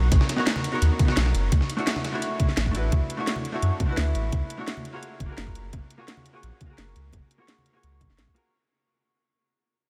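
Liquid drum and bass at 171 BPM in a lush, uplifting mood, this short cut from a longer piece fades out throughout as a dark, clean, picked hollow-body jazz guitar plays low-passed, delayed chords moving from Bmaj9 to Dmaj9 and then F#maj9 at 5.0 seconds. A deep, round sine sub bass with tube saturation sits up front, under a tight electronic kick, a garage kit with a cracking snare and warm hats, and bright, hard-handed congas. A gritty, tape-warm soul sampler kit adds hi-hat and snare in the background until 2.8 seconds, all within a light reverb.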